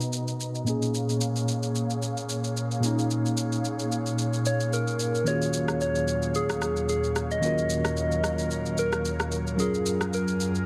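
Amapiano at 111 BPM in Eb minor with a lightly swung sixteenth-note feel, this soulful, late-night fragment rests on a clean, up-front tine electric piano with medium tremolo and an airy, breathy pad of detuned layers holding sustained chords through Bmaj7, Bbm7, Ebm11 and Gbmaj7. A round, gentle FM lead with vibrato, chorus and digital delay sounds briefly at the start and returns at 4.5 seconds, while an electronic shaker and rim click keep time and a barely audible downlifter sits within the opening 0.9 seconds. A filter sweep runs across the whole passage, set in light reverb and digital ambience.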